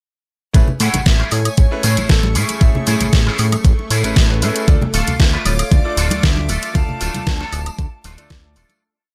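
An overdriven, knocking electronic kick drives this sunny, feel-good nu-disco piece at 116 BPM in A major, playing four-on-the-floor up front alongside an overdriven pop drum kit with a deep snare, hi-hat and woodblock on a disco backbeat, plus soft-handed congas and tambourine in the background. A fat, detuned sawtooth bass jumps octaves under a filter sweep, while a brilliant concert grand piano plays syncopated, sidechain-pumped chord stabs, a twangy envelope-filtered electric guitar with ensemble chorus plays a funk chord riff, and a lush, phased unison pad enters at 1.3 s. Over the Amaj7 to Dm changes, a breathy, hollow jazz flute with vibrato and digital delay sings distant hook phrases through the drop, which runs from 0.5 s to the end, with a fade-out beginning at 6.1 s.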